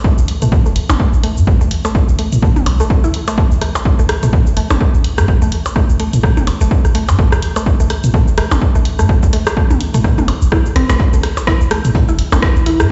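A swung 4/4 minimal techno groove at 126 BPM in A minor, tuned slightly flat, is driven by a punchy, up-front analog kick and a deep sine sub bass with a pitch-drop attack, both running through this short cut from a longer piece, with the bass pumping against the kick. Around them, a tape-warm analog drum machine taps out cabasa, hi-hat and rim click from 0.2 seconds, while a produced click kit adds percussion blips, rim clicks and toms soaked in dub echo from 0.9 seconds. A woody, round FM pluck with a noise layer carries the quirky riff, bright and percussive with a short decay, coloured by chorus, phaser, tape echo and sidechain pumping. After a drum fill at 10.8 seconds, a distant acoustic rock kit with a fat, dark snare and high-passed hats slips in at 11.0 seconds, and a swarming, detuned granular drone on E4 drifts in tensely in the background at 11.8 seconds. The sparse mix sits in light reverb, sounding as if played on a big system in a bare room, with its top end rolled off above 7.9 kHz.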